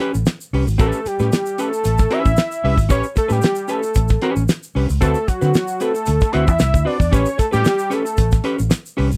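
Funk with a strutting swagger in straight 4/4, taken from a longer piece and moving from A9 to D13 at 5.0 seconds before returning to A9. A damped 1970s drum kit with a fat snare and tight kick sits up front beside a dark, round, foam-muted fingered electric bass, while a clean, dark hollow-body jazz guitar comps underneath and a grainy egg shaker adds a faint, bright glint. From 0.8 seconds a fat analog lead of detuned sawtooth and square waves, with a sub octave and vibrato, carries the sustained, mellow melody, all captured in a dry, close 1970s-style studio sound.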